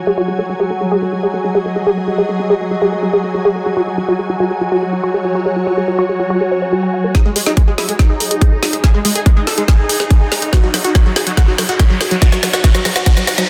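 A woody, wave-folded pluck carries the riff from 0.1 seconds, its percussive attack and short decay colored by chorus and digital delay in this alien, intense slice of psychedelic trance cut from a longer piece. Beneath it, a swarming, detuned drone and an ethereal, airy pad hold sustained harmony that shifts between G#5 and F#5, both bathed in their own built-in reverb and pumping against the sidechain. At 7.1 seconds the build-up begins: a punchy supersaw stab takes up the melody through phaser, cassette tape saturation and delay, while a tight electronic kick and an up-front drum and bass kit with a woody snare and bright hats drive a drum fill under a filter sweep on the synth arpeggio. From 8.8 seconds, a riser and reverse cymbal climb in the background toward the end. A moderate plate reverb gives a digital ambience, and the dense, heavily limited master keeps the whole passage pressing forward.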